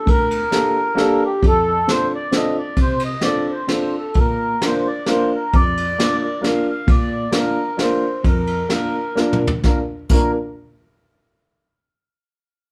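A rubato three-beat sway drives this nostalgic, whirling musette waltz, cut from a longer piece, where a reedy accordion with slow beating carries the melody up front over a dark, woody upright piano with long sustain and a vintage kit played with brushes, its punchy kick and dark cymbals rolled off at the top, until a drum fill at 9.2 seconds leads into a new section at 9.6 seconds, the band captured live in one room with moderate studio reverb.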